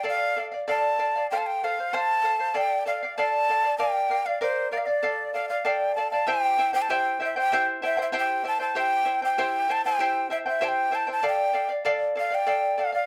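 A small, wet room gives this short cut from a longer Andean folk piece a close, reverberant sound, with both instruments placed up front. A large quena carries the melody between C5 and A5, its wooden, end-blown tone breathy and expressive, with a crisp, chiffy attack, vibrato and plate reverb. Beneath it a fingerpicked charango supplies the accompaniment from E4 to G5, its doubled strings, some tuned in octaves, giving a bright, shimmering acoustic ring. At 97 BPM in a straight 2/4, the harmony moves between Dm, F and Bb before shifting to a long stretch of C at 6.3 seconds and returning to Dm at 11.2 seconds. The mood is festive yet wistful, with quena and charango playing together throughout.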